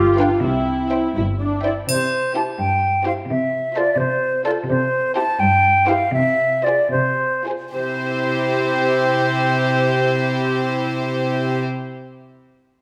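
Playful, whimsical cinematic film cue in 6/8, mischievous and quirky in mood, with its string sections bowed sul tasto on a wet scoring stage. A clear violin section carries the melody over a rich second violin line, a dark viola section and warm cellos, while a shadowy, distant clarinet and a full-bodied double bass section sound only briefly at the start. An airy silver flute enters at 1.6 seconds as the most forward voice, a close, dry triangle chimes for a moment, and the cue slows down between 4.0 and 7.7 seconds.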